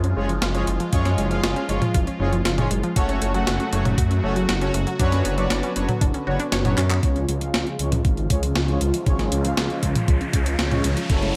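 Bathed in light digital reverb, this moody, cinematic synthwave passage at 118 BPM pairs a thick, detuned saw bass up front with a thumpy, tape-warm electronic kick entering at 0.9 s, a sampler-style drum machine of handclaps, hi-hat, snare and toms under gated reverb with a fill at 6.8 s, bold, nasal synth brass stabs with tape echo, punchy unison pluck arpeggios and a swirling phased pad in the background whose filter sweeps from 7.0 s as an electronic riser joins near the close.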